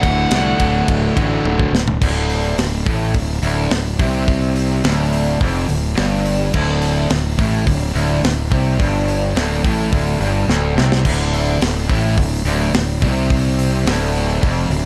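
A straight 4/4 groove at 106 BPM drives this swaggering, powerful hard rock excerpt in D mixolydian, with a tight metal drum kit up front, its high-tuned snare and rolled-off top punctuated by fills at 1.4 and 10.5 seconds. A growly, punchy fuzz bass sits forward beneath three overdriven riff guitars: a bright cranked stack, plus a sludgy part and a dark, double-tracked crunchy part in the background. A nasal lead guitar with a parked wah and tape echo states a brief melody before stopping at 1.4 seconds, all under a light reverb.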